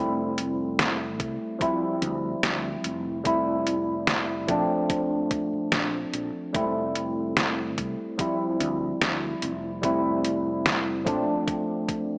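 A lush, chorused tine electric piano with tape echo sits up front in this dreamy, woozy vaporwave excerpt, cycling through rich ninth and eleventh chords over a round, dark fretless bass, a thumpy electronic kick entering at 1.2 seconds and a detuned 8-bit drum machine's hi-hat and snare, all bathed in a digital stage reverb with a cassette, small-speaker haze.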